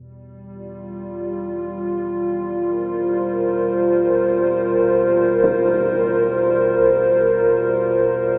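Soaked in a huge, dreamy reverb with a thin telephone-like colour, this ominous, unsettling fragment of dark ambient drone drifts in free time around a G minor seventh chord. A deep, rumbling drone sits low beneath the mix from the start, and at 0.9 seconds an up-front analog pad enters with moody, detuned, wave-folded chords given a chorus shimmer. A brief, bright impact surfaces very quietly at 5.4 seconds before the piece is cut off.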